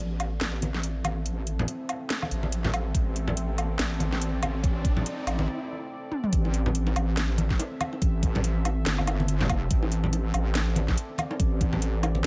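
A heavy, saturated square-wave wobble bass sits up front in A minor through this cavernous, dark deep dubstep excerpt at 142 BPM in a swung half-time feel, under a moody detuned sawtooth pad with chorus and built-in reverb, while a background riser builds until 5.5 seconds, a garage kit with cracking snare, metallic hats, toms and woodblock is soon joined by congas and bongos carrying dub echo, and a knocking, tape-warm electronic kick arrives at 2.9 seconds ahead of a drum fill and the drop at 6.3 seconds, all in a dry, close sound.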